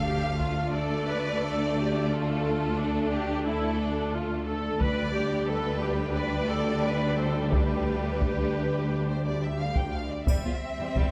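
A straight 4/4 pulse at 88 BPM carries this dramatic, epic orchestral film-score excerpt in D dorian, moving from Dm to G/D and then C/E. Lush violins sing the melody with vibrato and a soft attack, while a second violin section adds a rich, expressive line in the background and bowed violas fill in smooth, even accompaniment. Cellos sit close on the bass alongside the double basses, and a very quiet, dark French horn section holds sustained chords beneath. A huge, very quiet impact and brief, dry calf-head timpani mark the opening, and a close taiko ensemble struck with hard sticks drives prominently from 4.8 s to the end. A triangle appears at 10.3 s, and moderate concert hall reverb gives the orchestra a spacious setting.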